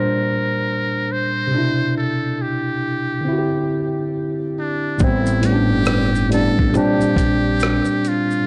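A dry, gritty recording opens this nostalgic, melancholic lo-fi hip hop excerpt at 69 BPM with a lazy 16th-note swing, as a worn, slightly out-of-tune tine electric piano with cassette-tape character sits up front under a filter sweep through the first 5.0 seconds, alongside a buzzy, thin muted trumpet melody with light vibrato and scooped notes in a jazz style. At 5.0 seconds the music moves into a new section over an Am9 chord, where a woody, pizzicato upright bass with gut strings enters alongside a compressed, sampler-style soul drum kit of hi-hat, rim click, shaker and a thumpy kick. The bass stops at 7.8 seconds while the piano, trumpet and drums carry on to the end, with the harmony drifting through rich chords such as Bb69, Cmaj9 and D9sus4.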